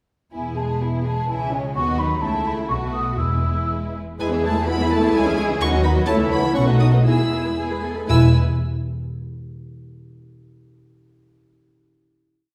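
Graceful and spirited, this complete quick classical-period movement for symphony orchestra moves in 2/4 at 113-130 BPM with a rubato feel in E major, with two violin sections carrying the rich, vibrato-laden melody and second line in a rocking two-note figure while violas fill in smooth, even chords in the rhythm of the tune. A hollow, pure-toned flute section adds a mellow second line until 3.7 s, expressive cellos add a sustained bass with passing notes and a counter-melody that answers at phrase ends, and an up-front double bass section doubles the bass line, with timpani single strokes on bass notes at 3.2 s and again at the close. From 4.2 s a mellow French horn section enters with sustained chords doubling the tune at the octave as the opening phrase repeats, and the piece settles on a final chord, all heard from further back in a wet recital hall.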